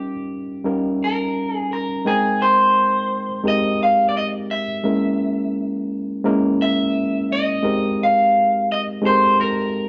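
Heard through a wet stone room with a 1.2-second reverb tail and a top end that stops at 7.9 kHz, this short soul cut sounds like a band playing live together in one space. The mood is lush and romantic, moving at 86 BPM in 4/4 in Ab major, with a gentle 16th-note swing. An electric guitar at the edge of break-up carries the melody from the first second, its dark, picked tone sitting up front and just slightly broken up. Beside it, an overdriven reed electric piano plays the accompaniment through a combo amp, reedy and gritty, also placed up front. The harmony opens on Eb7, settles into Abmaj9 at 2.0 seconds, shifts to a Dbm6 at 4.8 seconds and returns to Abmaj9, both parts sounding together throughout this fragment of a longer piece.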